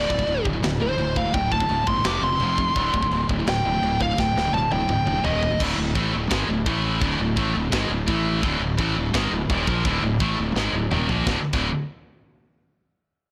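A dark, smooth overdriven lead guitar solos over the opening 5.6 seconds of this relentless, aggressive heavy metal excerpt, riding atop a bright, double-tracked high-gain guitar riff, a growly fuzz bass and a tight, mid-forward drum kit with china and crash cymbals and toms that rolls into fills before the solo ends and again near 10.6 seconds, all within a small, blown-out room sound.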